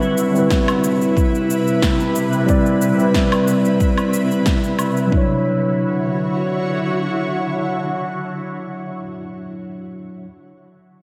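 A mellow tine electric piano, filtered and sent through tape echo with a filter sweep across its first 5.1 seconds, accompanies this blissful sunset chillout excerpt over a shimmering, ethereal pad with chorus and phaser, while overdriven electronic cabasa, punchy snare and woodblock are joined at 0.5 seconds by a deep, overdriven electronic kick that plays until 5.3 seconds, as the harmony moves from Cmaj7 to Dmaj9 inside a dreamy, reverb-soaked hall.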